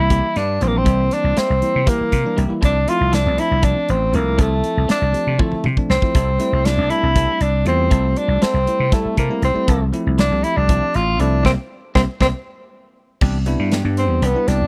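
A warm, vibrato-laden tenor saxophone leads this bright, slick electric jazz fusion excerpt in a quick 7/8 around C mixolydian, riding over growly, punchy slap bass, a polished drum kit with a punchy kick, bell-like tine electric piano and twangy chorus-soaked guitar stabs in the background, with drum fills at 5.4 and 12.8 seconds before the saxophone breaks into a solo at 13.2 seconds, all in a dry, close 1970s-style studio sound.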